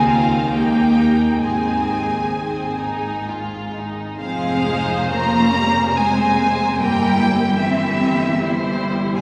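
A focused violin section carries the melody up front, its bowed vibrato line set at a distance in this serene, slow romantic movement for string orchestra in 3/4 with a flexible, rubato feel. Beneath it, a second violin section moves with a smooth, even tone, while a close, lush viola section fills in the accompaniment with expressive vibrato. Cellos and double basses share the bass together, the cellos rich and steady and the double basses smooth and lush at the bottom of the texture. A long cathedral-like reverb surrounds the ensemble, giving it the sound of a church or concert hall, along with a small-room ambience. This fragment of a longer piece opens its first section on gentle, settled harmony before moving into a more shadowed second section at 4.2 seconds, and the strings play through to 9.2 seconds.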